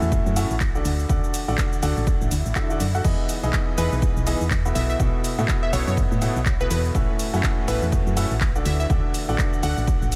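Joyful and euphoric, this piano house cut from a longer piece moves at 123 BPM in 4/4 with a 16th-note swing. A clear baby grand piano plays the riff across the whole passage, pumping with sidechain compression and trailed by a diffuse ambient delay, over chords moving from A6 and D through Emaj7 and B7sus4 before returning to A6 and D. A solid FM bass, round, dark and fast to attack, pumps underneath while a punchy, tape-warm electronic kick drives the groove alongside a house kit of warm hats, handclaps, shaker and crash cymbal. A very quiet electronic swell sounds briefly from 2.2 to 3.0 seconds, and at 3.8 seconds a catchy, plucky unison lead enters with a detuned sawtooth body, a sub octave and a filter sweep, its mellow, sustained tone also carried by the ambient delay. Light reverb gives the mix a polished sense of space.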